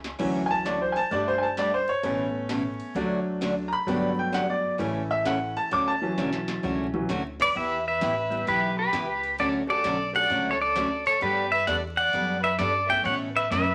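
Western swing country at 131 BPM in D major, this swinging, playful excerpt opens with a brilliant, woody upright piano soloing up front, over pizzicato upright bass with a thumpy steel-string tone and a boxy picked archtop guitar. Behind them, a produced electronic drum kit with a distorted kick and clanging snare sits in the background, playing a fill at the start and another at 6.2 seconds. At 7.4 seconds a twangy, fingerpicked pedal steel guitar takes the melody with slide and volume swells, joined by a bowed fiddle with a reedy gut-string tone on a second line, as the chords move through Em, Dmaj7 and Gadd9, all bathed in wet studio reverb and vinyl crackle.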